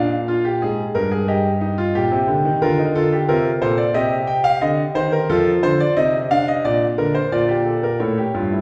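Heard from further back in a recital hall with a long, wet reverb, this serious, solemn fragment of a baroque-style three-part fugue gives a solo concert grand piano a brilliant, open tone with deep bass and long sustain across its G2 to G5 range, moving through a stately chord sequence before the passage is cut off at 8.6 seconds.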